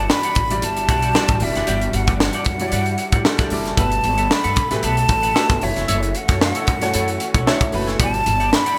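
Slick and urban, this excerpt of polished 1980s jazz-funk pop carries a breathy, expressive concert flute melody over intimate grand piano with subtle chorus, a lush and very quiet bowed string section, a bright, clean semi-hollow electric guitar riff with analog chorus tucked in the background, woody pizzicato upright bass, and a crisp, up-front fusion drum kit with a punchy kick, high-tuned snare and gated reverb, set in a 1980s-style digital production with moderate plate reverb.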